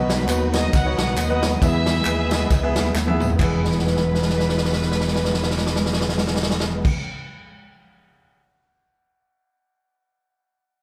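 Drenched in a large-room reverb that captures a band playing live together, this brief cut from a longer uptempo gospel piece swings at 135 BPM in E major with a reverent, jubilant spirit: lush bowed strings with vibrato and portamento carry the melody over an intimate grand piano, a reedy tonewheel organ with key click and slow rotary shimmer holds sustained chords, and a round fingered electric bass, tambourine and handclaps join a punchy, up-front big-band drum kit whose fills begin at 3.0 s and 3.6 s and which plays on alone from 6.9 s until 8.4 s.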